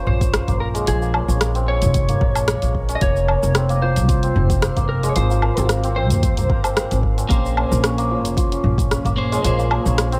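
A woody, thumpy upright bass sits up front with tube saturation and sidechain pumping in this hypnotic, meditative organic downtempo excerpt at 112 BPM in Bb minor, where a shimmering, hammered santur plays arpeggios through a filter sweep and digital delay, a slightly broken-up electric slide guitar carries the melody until 7.0 seconds, and a clean, scooped electric guitar enters as accompaniment at 7.3 seconds, while a low-tuned tabla in the background plays alongside a layered deep house kit of hi-hat, rim click, shaker and woodblock over an overdriven, deep electronic kick, all moving from Bbm7 through Ab to Bbm9 in light reverb.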